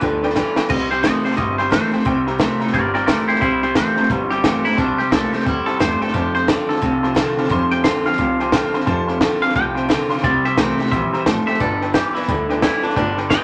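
A wet, reverb-washed studio sound frames this upbeat, rowdy swung rockabilly cut. A quick fill on the dry, punchy compact cocktail kit at 0.4 seconds launches a clean, compressed solo at 0.7 seconds from the twangy, phaser-tinged lead electric guitar. Beneath it sit a slightly broken-up, lo-fi riff from an electric guitar through a small old amp, a bright dreadnought steel-string acoustic and a detuned, jangly honky-tonk upright piano in the background, and a woody, thumpy pizzicato upright bass.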